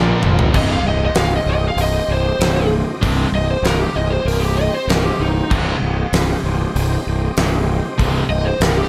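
Hard rock with an aggressive, menacing mood, cut from a longer piece in a straight 4/4 feel. A short drum fill opens on a Bb chord, and at 0.5 s a lead guitar solo begins over C minor, played through a small cranked amp with overdrive and slapback echo, picked and warm in tone. Underneath, a compressed distorted electric guitar and a double-tracked high-gain guitar grind out a low riff in the background, while a scooped high-gain guitar adds a higher riff only until 0.5 s. A fuzz-soaked fingered bass sits up front, growly and punchy, and a shouting tonewheel organ holds bright sustained chords in the background with key click, chorus vibrato and a slow rotary speaker. The huge arena drum kit, up front in a big room with a fat snare, thumping kick, crash, hi-hat and toms, drives everything with generous studio reverb.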